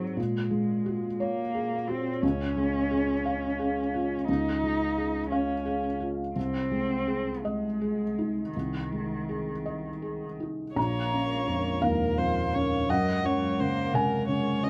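A felt-muted upright piano provides the accompaniment in this short cut from a longer neoclassical piece for piano and strings, its thick felt giving a mellow, intimate tone with the soft noise of the action audible up close. Set in Bb minor in a slow, rubato 6/8 at roughly 53-59 BPM in dotted quarters, the music feels longing and fragile, moving through chords such as Gbadd9/Bb, Db and Ab/C. A single muted cello plays con sordino as a second line from the start, veiled and dark with vibrato, soft attacks and portamento, sounding slightly distant. At 10.8 seconds, as the harmony turns to Bbm7, a lone muted viola joins in the accompaniment with a close, veiled sound and gentle vibrato. A warbly, detuned tape-like pad enters at the same moment in the background, holding nostalgic lo-fi chords with chorus and its own reverb. Light reverb surrounds the ensemble, keeping the hushed, introspective atmosphere intact to the end at 14.7 seconds.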